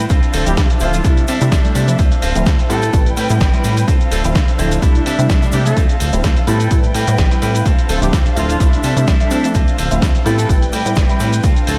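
A punchy, tape-warm electronic kick drives this funky, groovy filtered disco house cut at 127 BPM in 4/4 with a light 16th-note swing in D dorian, joined by a gritty sampler-style kit with a fat snare, hi-hat and shaker, a saturated tube shaker in the background, a plucky ring-modulated analog bass, a detuned, dark polysynth comp with chorus and phaser, a bright, twangy envelope-filtered guitar riff, veiled con sordino strings holding chords, and a mellow horn section from 0.3 s carrying the melody with 12-bit grit and delay, every part but the kick pumping to the sidechain over a looping Dm7, C69, Dm7, Am9 progression in light reverb.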